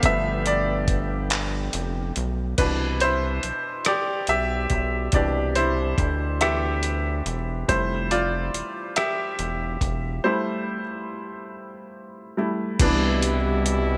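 Slow six-eight R&B at 47 BPM in C major, tender and sensual, with a bright baby grand piano taking the lead throughout, its intimate, slightly worn tone carrying audible action noise over chords moving from G7 to Cmaj9 and Fmaj9. A rubbery, hollow square-wave bass and a dusty, sampler-style soul drum kit sit up front, the gritty kit built from a thumpy kick, hi-hat, rim click, handclaps and crash cymbal and treated with gated reverb. A clear, loose horn section with vibrato adds delayed stabs at the opening and again from 12.8 seconds, after a break at 10.2 seconds, all set in a lush hall reverb with a bright 1980s-style digital sheen.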